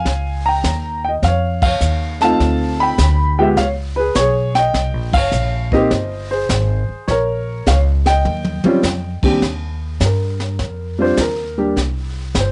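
Playful and sophisticated, this excerpt of a swinging jazz piano trio pairs an up-front baby grand piano carrying the melody with a woody, thumpy pizzicato upright bass and a brushed drum kit with dark cymbals and a boomy kick, all heard through light reverb and the hazy softness of a home cassette recording, with band accents at 1.5 and 5.0 seconds and a drum fill leading into a piano solo at 9.4 seconds.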